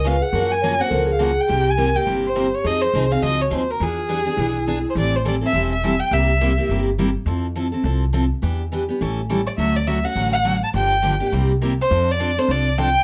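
Close, detailed microphones and light reverb frame this bittersweet yet fiery swing tune in the jazz manouche style, cut from a longer piece. A bowed violin carries the melody with expressive vibrato and portamento, dropping out briefly before returning at 9.5 seconds, while a mellow vibraphone played with soft mallets adds a ringing, airy second line with a fast motor vibrato until 4.9 seconds. Underneath, a bright, full-bodied picked steel-string acoustic guitar supplies the accompaniment and a woody, thumpy pizzicato upright bass on gut strings sits up front.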